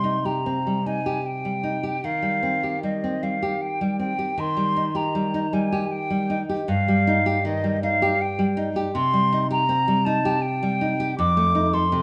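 A hollow, pure concert flute with tongued notes and vibrato sings a yearning, melancholic melody over fingerpicked nylon-string guitar with a deep classical tone and audible finger squeaks, both up front in this romantic duo fragment in a rubato three-four lilt, moving from C minor through E-flat toward an F7 within a moderate recital-hall reverb.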